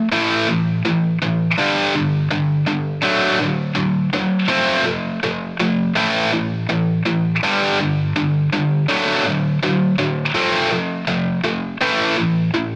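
A dense, heavily limited modern master with light reverb frames this angsty, cathartic rock passage, cut from a longer piece, at 82 BPM in 4/4 with a straight feel in A minor, tuned to A4 = 445 Hz. A tight, bright electric guitar, distorted, picked and double-tracked, sits up front and plays alone for the full 12.8 seconds, ranging from G2 to C4. It cycles through A5, G5, D and F twice before landing back on A5 at 11.8 seconds.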